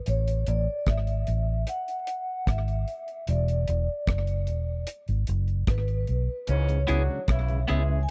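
Romantic and sweet, this lovers rock reggae fragment sets an airy, ringing vibraphone melody with tape echo over a round, foam-muted bass and a dark, dry drum kit of hi-hat, kick and rim click, both up front in a close 1970s-style studio, before a clear horn section enters at 6.5 seconds and a mellow tonewheel organ with slow rotary speaker, a tine electric piano with slapback echo and bright, twangy guitar stabs join briefly near the end.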